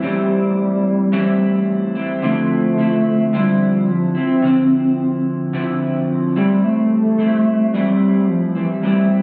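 A warbling, nostalgic lead carries the melody in this wistful, mellow indie pop excerpt. Its wave-folded blend of square, sawtooth and sine tones has a fast attack, long sustain, vibrato and analog chorus. Beneath it, an electric guitar through a small old amp picks a warm, slightly broken-up, compressed accompaniment with its own chorus and warbly pitch drift, moving from Am7 to Dm9 at 2.2 seconds and back to Am7 at 6.4 seconds over a lightly swung 4/4 feel, with both parts up front in a phone-in-the-room recording dressed in light digital ambience and studio reverb.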